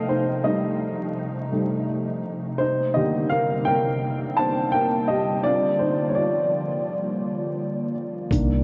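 Reflective and melancholic, this lo-fi hip hop excerpt unfolds with a gentle swing. A dark upright piano leads the passage, intimate and woody, with audible action noise, a short sustain and a vintage cassette-tape softness from its low-pass filtering. Behind it, a hollow, flute-like pad sits low in the mix, holding slow-attack chords with a long release and a mellow ensemble chorus as the harmony moves from F7 to Cm9 to Bb6. Only at 8.3 seconds do a pizzicato upright bass, thumpy with gut strings, and a gritty, compressed sampler-style kit with hi-hat and kick arrive up front. The whole mix is soaked in a huge ambient reverb and laced with vinyl crackle, giving the piece a dreamy, dusty haze.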